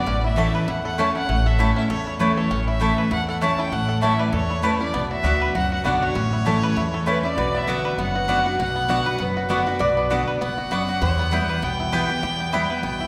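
Driving and lonesome, this brief bluegrass excerpt swings at 197 BPM in a resonant concert hall, with a clear, smooth-topped bowed fiddle and a twangy fingerpicked banjo carrying the melody over a full-bodied, up-front dreadnought guitar, woody mandolin stabs and a thumpy pizzicato upright bass, while a metallic, nasal lap resonator guitar adds a slide second line from 7.4 seconds as the chords move from A through Bm to Em.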